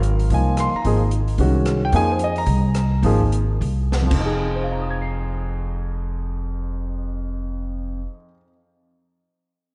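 Modal jazz with a cool, searching mood, swung in 4/4 and resting on a single minor-seventh chord, this short fragment of a longer piece opens with a woody, thumpy pizzicato upright bass on gut strings sitting up front alongside a small-room acoustic drum kit, joined at 0.3 s by a warm, natural-sounding grand piano spanning a broad range. The drum kit, with dark cymbals, a medium-tuned snare and a boomy kick, plays crash, hi-hat, kick, rim clicks and snare as the tempo slows from 1.9 s, before a short fill that ends its part at 4.2 s. A lush hall reverb soaks the mix in a dreamy haze with a muted top end.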